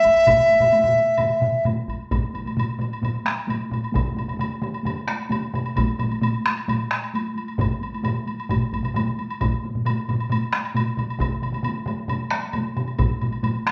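A bright, airy dizi opens this cut with a buzzing bamboo tone and soft attack, up front for just 1.6 seconds, as a woody woodblock and four taiko parts struck with heavy sticks start beneath it. The drums carry on until the cut closes at 13.7 seconds, though two drop out slightly earlier: one compressed and saturated up front, one close and dry, one in a small room and one in a live room, the ensemble playing together in a large, reverberant studio. The ceremonial, powerful 4/4 pulse keeps speeding up throughout.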